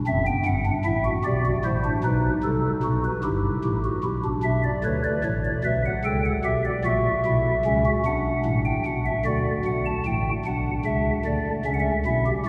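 In a straight 6/8 pulse of 50 dotted-quarter beats per minute, this serious, driving baroque-style three-part fugue, cut from a longer piece, is played solo on a pipe organ's stopped flute stops, tuned to A4 = 439 Hz and spanning F#1 to A5. The voicing is soft, hollow and mellow, with audible chiff and a tremulant. The harmony moves from E minor toward B minor, then turns to D major at 9.3 s, all heard from further back in a cathedral whose wet 6.0-second reverb hangs heavily around the sound.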